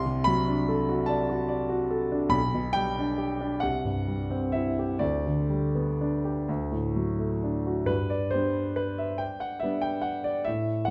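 Dreamy and tender, this brief passage cut from a longer piece is a romantic nocturne for solo piano in a lilting 6/8, shaped with a free, breathing rubato. A grand piano carries everything alone from start to finish, its tone warm and natural, sitting up front and ranging from deep bass notes up into the bright upper register. The harmony drifts gently from an opening seventh chord over a low bass note through a sequence of familiar progressions that settle onto a restful home chord at 7.9 seconds, where a new section begins. The piano is bathed in a generous recital-hall reverb that lets each chord linger and bloom into the space. The overall effect is intimate and quietly lyrical, like a private reverie at the keyboard.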